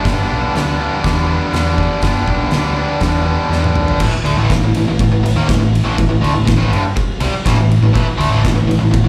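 Heard live through a club PA, this swaggering, rowdy garage rock cut at 122 BPM in straight 4/4 sets a biting, double-tracked overdriven guitar riff with slapback echo up front beside a dark, round, picked hollow-body short-scale bass pushed through overdrive, while an oversized low-tuned acoustic kit, gritty and saturated in a pumping stone room with a fat snare and boomy kick, plays a fill at 3.5 seconds leading into a new section at 4.0 seconds.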